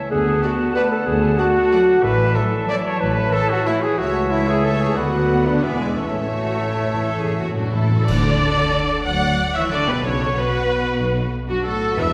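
Woodwinds and low strings open this elegant, sweeping orchestral ballroom waltz in 3/4: a dark, punchy clarinet, a hollow flute section and a cor anglais with a smooth top set second lines, while a very quiet bassoon accompanies over a focused, warm-toned chamber cello bass. Almost at once a distant, roomy French horn section holds sustained chords, a solo trumpet adds stabs, and a mellow tuba joins a smooth, even chamber double bass section on the bass. The melody belongs to a chamber violin section in the background, shadowed by a lush, expressive studio violin section and a bowed viola accompaniment, all with vibrato. The tempo moves freely with rubato between 163 and 201 BPM, and the key shifts from A major to D major at 8.1 seconds. Timpani struck with hard mallets sound close and dry, building a fill from 6.0 seconds that meets dark cymbals and concert bass drum before a full band accent lands on the change. 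The woodwinds, horns and trumpet drop out just before that point, leaving the strings, tuba and timpani to carry the final bars under a generous scoring stage reverb that places the listener further back in the room.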